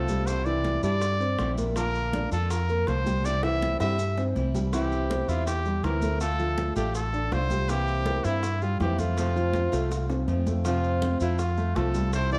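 Relaxed and warm, this excerpt from a longer Cuban son and guajira piece moves at 162 BPM in a straight 4/4 in F major. A clear trumpet with vibrato carries the melody up front in a pop style, while a fretless electric bass sits forward with a round, amped tone. A dark, boxy grand piano plays arpeggios beneath, and a picked acoustic archtop guitar with old strings adds woody accompaniment. Ringing, high-tuned congas played with hard hands and grainy, band-limited maracas stay in the background, joined at 0.3 seconds by tight, very quiet bongos. Drum fills arrive around 3.2 and 9.5 seconds as the chords move from Cadd9 through Bb, C, Dm and C7 to F, all set in a moderate large studio reverb with a dark production.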